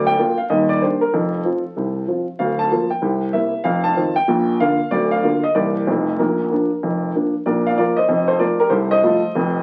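Swinging eighth notes drive this short cut from a longer stride piano piece, moving at a brisk 190 BPM in 4/4 with a playful, buoyant character. A single upright piano carries everything on its own, sitting up front with a woody, natural tone that spans from deep D1 in the bass to A5 at the top. The harmony stays rooted in Bb major, cycling through Ebmaj7, Bb/D, C7 and F7 in a lively turnaround before settling on Bb around 6.2 seconds and then restarting the same phrase near 7.5 seconds. The fragment closes at 9.6 seconds on an F7/C chord, leaving the phrase hanging mid-thought. The sound carries the character of a very old 78 rpm record, with vinyl crackle running underneath and a studio reverb that gives the piano a roomy, glowing halo.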